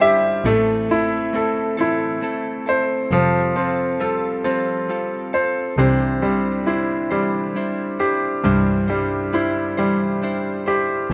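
A clear, polished concert grand piano sits up front, opening with a brief fill before carrying the accompaniment of this tender, heartfelt pop ballad in six-eight through Am, Fadd9 and Cadd9. Beneath it, a bright, compressed electric guitar recorded direct picks clean arpeggios, while a single muted double bass is bowed con sordino, veiled and dark with vibrato and a soft attack. A lush hall reverb surrounds this rough home-demo mix, which is cut from a longer piece.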